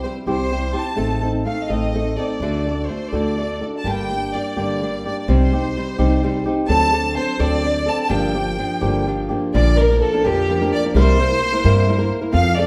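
This excerpt of dramatic, passionate mariachi-style Mexican folk music, in a straight 6/8 at 85 BPM, opens with a violin section, flamenco guitar and upright bass together, joined until 0.5 seconds by a barely audible concert harp playing mellow, ringing thumb-plucked arpeggios. Up front, the bowed violin section carries the melody with a rich, smooth vibrato and an even chamber-ensemble blend. Also up front, the fingerpicked acoustic guitar supplies fresh-stringed flamenco accompaniment, while the pizzicato upright bass gives a woody, thumpy foundation on steel strings. The harmony starts in G minor and shifts to Bb major at 9.5 seconds as a new section begins. The players sit in a moderate recital hall reverb.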